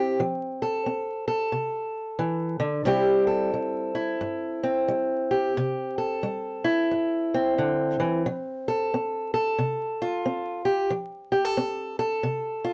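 A loping swing at 89 BPM in 4/4, with the eighth notes pushed into a gentle shuffle, drives this short cut from a longer blues. A lone fingerpicked acoustic guitar, an old ladder-braced instrument strung with old strings, carries the whole passage, ranging from G2 up to A4 with a gritty, swaggering attitude. Its tone is woody and boxy, placed up front in the mix and caught by close, detailed microphones under light reverb. The harmony moves from F to C at 2.9 seconds and settles back on F at 8.2 seconds. A layer of vinyl crackle sits over the recording, and the guitar is tuned to A4 = 443 Hz.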